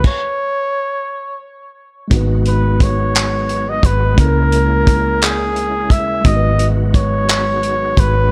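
A smooth-topped flugelhorn sings the melody up front over mellow tine electric piano, a reedy, lightly overdriven tonewheel organ with fast rotary speaker in the background and a warm soul drum kit with a tight kick, dark cymbals and handclaps through a stop-time opening, before a round, foam-muted electric bass enters at 2.1 seconds and this sultry, late-night slow six-eight R&B fragment settles into its groove in a small room.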